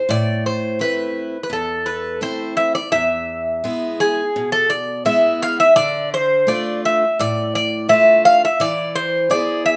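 A metallic, double-strung bouzouki opens this moody, bittersweet Greek folk excerpt, carrying the melody up front with an octave-doubled edge. A bright picked steel-string acoustic guitar enters beneath it at 0.1 s, sitting well back in the mix as it accompanies through A minor, then a shift at 2.9 s to E, D minor and back to E. The pair sound as if playing live together in a large studio room, wrapped in a moderate reverb.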